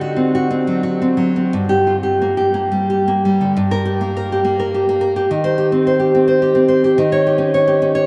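Romantic solo classical guitar in 6/8, played with free rubato and a wistful, melancholic mood, in this short fragment of a longer piece. The fingerpicked nylon-string guitar sounds bright and full-bodied with fresh strings, sitting up front as it moves from a dominant chord into minor harmony, enters a new section at 3.5 seconds, and then moves on to further chords. A huge, wet reverb places it in a vast, echoing space, its high end rolled off.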